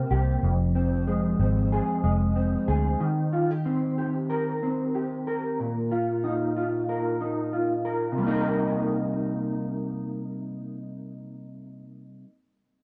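Indie bedroom pop excerpt in C minor at 93 BPM with a lightly swung sixteenth feel and a wistful, mellow mood, where a dark, clean, fingered electric guitar up front, coloured by ensemble chorus and a warbly pitch drift, carries the chords Fm, Eb6, Bbsus4 and Cm7 through to 12.3 s, accompanied from the start until 2.9 s by a round, punchy, foam-muted vintage bass, in a dry, close 1970s-style studio sound with light reverb.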